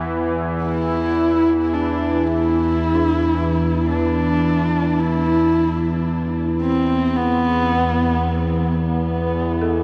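Cavernous and unsettling, this dark ambient drone drifts in free time, cut from a longer piece and bathed in a huge, wet reverb with a 7.4-second tail. Up front, a single horsehead fiddle carries the melody between B3 and E4, its bowed horsehair strings sounding husky and boxy, with vibrato, portamento and a soft attack, and a delay trailing its expressive phrases until it falls silent at 8.8 s. Alongside it, an equally up-front analog drone holds from E2 to E3, an evolving blend of sawtooth, pulse and sine waves with pulse-width modulation and wave-folding, swelling in slowly and sustaining under a chorus effect. From 2.9 s, a very quiet, detuned FM synth bell enters with eerie, inharmonic arpeggios between D4 and A4, each fast-struck note decaying into a mellow, chorused shimmer. The whole recording carries the worn, warbling pitch drift of old cassette tape, which deepens the sense of unease.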